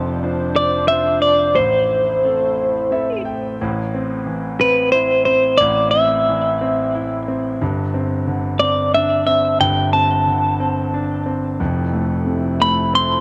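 This acoustic folk-pop ballad in A minor moves at 90 BPM in an unhurried 3/4, its mood melancholic and heartbroken. A clear concert grand piano carries the accompaniment throughout, intimate and polished, with deep bass and audible action noise that place it close and present. A sweeping, resonant pad of sawtooth and triangle tones holds sustained chords behind it, bright and wave-folded with a slow attack, long release, chorus and phaser. The pad drops away at 3.6 seconds and returns at 11.6 seconds. From 0.6 seconds a clean electric guitar takes the melody up front, its picked, compressed tone colored by tremolo, tape echo and the softened grain of cassette tape. The harmony drifts from Dm7/F through Am and Gsus4 to Fmaj7, set in light reverb and a small room, and the passage is cut from a longer piece with the intimacy of a home cassette recording.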